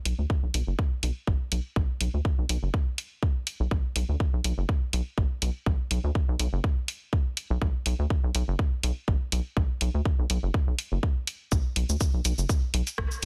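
A swung 4/4 groove at 123 BPM drives this clinical, quirky minimal techno excerpt in B minor, with a punchy, up-front electronic kick and a house drum kit of bright hi-hats, rim clicks and shaker, both lightly touched by studio reverb and the kit's snare carrying some soft clipping. Underneath, a rubbery square-wave bass with a hollow, wave-folded, resonant filter pluck bounces between F#1 and D2, its dark tone pumping through sidechain compression. The dense, heavily limited mix stays dry and close, and a drop arrives at 11.5 seconds before the cut at 13.2 seconds.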